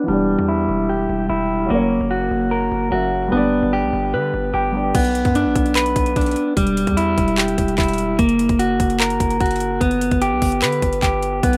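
A half-time trap groove at 148 BPM in 4/4 drives this dark, hard-hitting hip hop fragment in B harmonic minor, cut from a longer piece. A dark, mellow concert grand piano with deep bass plays accompaniment through low-pass filtering and plate reverb until 5.0 seconds, while a filter sweep runs across the opening 4.9 seconds over chords moving from Em7 through F# to G. An electric guitar at the edge of break-up, fingered, compressed and up front, carries arpeggios throughout, its tone darkened by a low-pass filter and trailed by tape echo and plate reverb. Beneath it, a distorted 808-style bass with a heavy sine body, a noise layer, a fast attack and a decaying tail sits low in the mix. At 4.9 seconds the trap kit arrives up front with a hard-clipped kick, metallic hi-hats, handclaps and crash cymbal, sounding electronic and tape-warm as the harmony shifts to Bm, Em, F# and G. The whole has the light reverb and rough balance of a home demo mix.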